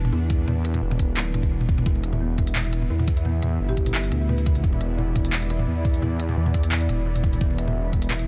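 A half-time 4/4 groove at 173 BPM drives this tense, dark drum and bass excerpt, where a knocking, layered electronic kick and a crisp-hatted electronic kit with handclaps and toms sit beneath a deep, rumbling detuned saw bass up front, while a string-like bowed drone with sidechain pumping, woody kalimba arpeggios through digital delay, a mellow pulsing gated texture arriving at 1.9 s, and a brief rosewood marimba melody with tape echo at 3.7 s hover in the background of a dense, heavily limited digital ambience.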